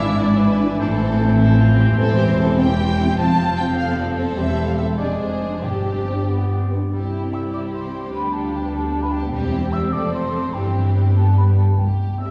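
A cheerful, spirited classical-period movement in 6/8 with a rubato feel opens with nearly the whole orchestra at once: a lush, close violin section carries the melody over a second violin line, a pure, hollow flute and a bright oboe, while a rich viola section and a bassoon provide accompaniment, very quiet mellow French horns hold sustained chords, and dark, expressive double basses join smooth cellos in the bass. Soft-mallet timpani add a round touch from 5.6 seconds, and the oboe, bassoon and horns drop out around 6.7 seconds, leaving the strings and flute to finish the passage. The ensemble sits further back in a reverberant scoring stage, and the recording is cut from a longer piece.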